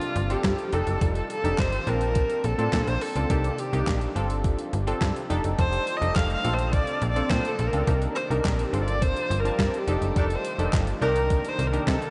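Slick and danceable, this early-eighties boogie funk cut moves at 105 BPM in a straight 4/4, sitting in C dorian with a chord cycle that circles through G7sus4, F13, Bbmaj9 and Cm9. An up-front bowed viola carries the melody as a solo from start to finish, its boxy tone shaped by vibrato, portamento and an analog delay. Beneath it, a punchy, detuned sawtooth polysynth comps with a filter sweep and chorus, while a snappy FM bass with a metallic attack enters at 0.2 seconds and sits forward in the mix. A crisp 8-bit drum machine drives the groove with a thumpy kick, medium-tuned snare, hi-hat and handclaps, overdriven and re-recorded in a large room, and a very quiet lush unison pad holds sustained chords with chorus and phaser. At 10.2 seconds a distant, roomy horn section adds a brief accent with light vibrato, all of it bathed in a dreamy cathedral reverb with a dark top end in this short excerpt from a longer piece.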